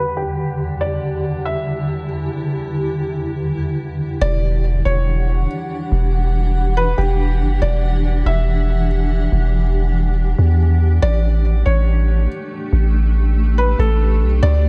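Soft room reverb frames this hazy, ethereal stretch of atmospheric cloud-rap, cut from a longer piece. It runs at 141 BPM in 4/4 with a half-time feel, set in E dorian. A felt-muted upright piano carries the melody between G4 and E5, its intimate tone passing through a low-pass filter and tape echo, with audible action noise and short sustain. Beneath it a granular cloud pad holds sustained chords, blurred and detuned, evolving with a moving notch, a slow attack and a long release, dulled by its own low-pass filter and bathed in built-in reverb. At 4.2 seconds a deep, sine-toned 808-style bass enters up front, its fast attack decaying across held notes from E1 to E2. The harmony rests on Em9 before shifting to A7sus4 at 11.0 seconds.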